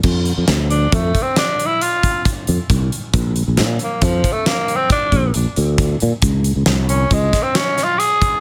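A raspy, gritty tenor saxophone solos up front from 0.7 seconds in this driving, bright progressive instrumental excerpt in 7/4 at 136 BPM, carried by a growly fretless electric bass with subtle chorus, a huge arena drum kit with a fat snare and punchy kick, and a grainy egg shaker that slips in very quietly at 6.2 seconds, all under light reverb over chords moving from F5 to Bb5 to Db5.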